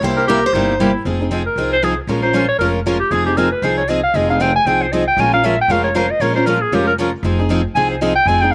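A brisk, swung 4/4 pulse drives this bittersweet, swinging snippet of acoustic string swing in the jazz manouche style, anchored by a woody, growly pizzicato upright bass and two picked steel-string acoustic guitars on accompaniment, one bright with fresh strings and the other boxier, parlour-sized and set lower. A warm, up-front picked guitar states a brief melodic figure with slapback echo over a C7#9 chord until 0.9 s, while a clear, punchy clarinet with light vibrato and its own slapback enters at 0.2 s and takes a forceful, vintage-toned solo from 1.1 s as the harmony moves between Fm7 and Bbm7. The sound is dry and open-air, with little reverb.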